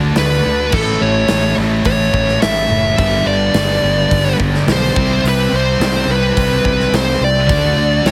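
Anthemic and powerful, this hard rock excerpt at 106 BPM in 4/4 moves through D, A, G and C, with a dark, high-gain lead guitar up front carrying the melody through distortion and digital delay, while a big acoustic rock kit with a punchy kick, medium-tuned snare and bright cymbals enters alongside it at 0.2 seconds over a growly fuzz bass, a scooped high-gain riff guitar and two sludgy overdriven riff guitars in the background (one double-tracked and very quiet), a very quiet gritty tonewheel organ holding thick sustained chords with percussion and chorus vibrato, all set in a small room and squeezed into a heavily compressed, radio-like sound.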